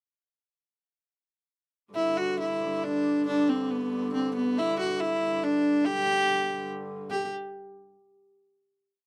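Medieval dance in three, ancient and festive, where a biting, gut-string viola da gamba carries an ornamented modal melody up front from 2.0 seconds over a dark, nasal hurdy-gurdy drone that sits far lower in the mix, the whole piece speeding up through to a final note that begins at 7.1 seconds, in a close, dry 1970s-style studio sound with light reverb.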